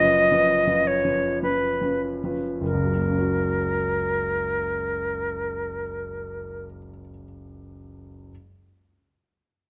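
Close, detailed microphones place both instruments up front in a moderate recital hall reverb, giving this short classical fragment an intimate, serene character. It is a romantic duo in F# major, tuned to A4 = 439 Hz, moving in a slow 3/4 at 48-59 BPM with a rubato feel and a slowing of pace through the opening bars. The silver concert flute carries the melody between A#4 and D#5, its pure, metallic tone shaped by vibrato and a soft attack. Beneath it, a dark grand piano supplies mellow, smooth accompaniment from deep F#1 up to B4, with a vintage quality and audible action noise adding to the closeness. The harmony rests on a C#7 over an F# bass before settling onto F# major at 2.6 seconds, and the flute falls silent at 6.7 seconds, leaving the piano to sound alone until 8.3 seconds, where the fragment ends with a warm sense of calm.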